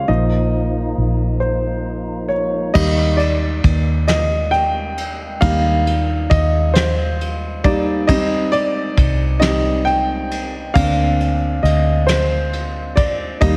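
A woody upright piano leads this tender, romantic six-eight pop ballad, its intimate tone carrying audible action noise as it plays solo from start to finish in Eb major at a slow 45 BPM, counted in dotted quarters. A fat, clean tonewheel organ holds sustained chords through a slow rotary speaker with vibrato and key click, stopping at 2.7 seconds. A dark, round, foam-muted electric bass sits up front under the piano. At 2.8 seconds a soft brush kit enters with a fat snare, punchy kick and dark crash and ride cymbals, captured in a small room with a warm, rolled-off top. The harmony moves from Bbsus4 to Eb, then Cm and Bbadd9/D, and at 13.4 seconds a mellow, nasal section of stopped French horns touches a single background note as this excerpt from a longer piece closes under light studio reverb.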